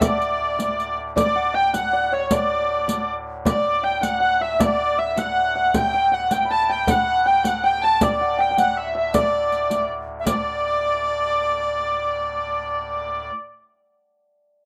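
A festive, ancient-sounding medieval dance in D major at 106 BPM in a straight 6/8 opens with everything at once: a nasal, wheel-bowed hurdy-gurdy carries the melody up front, joined by an airy, bright tenor recorder with vibrato and a shimmering hammered dulcimer on second lines, all over a soft oboe-stop organ drone with a touch of chiff. A deep, dry frame drum and an up-front, jingling riq drive the rhythm until 10.4 seconds, after which the melodic voices carry on before the dulcimer rings out alone to 14.0 seconds. The rough home-demo mix sits in a modest small room, with plate reverb on the hurdy-gurdy, recorder and organ, and the clip is cut from a longer piece.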